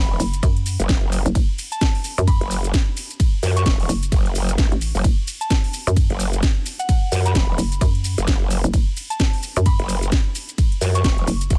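A growling, wobbling growl bass with overdrive, chorus and sidechain pumping drives this aggressive, bouncy bass house excerpt in F# minor at 130 BPM with a swung 16th feel, joined by a hollow, knocking FM bass with tube saturation, a punchy, tape-warm electronic kick entering at 0.4 seconds, a house drum kit of metallic hats, ride cymbal, shaker and cracking snare, and a soft, pure synth bell melody bathed in dub echo, all set in a digital ambience.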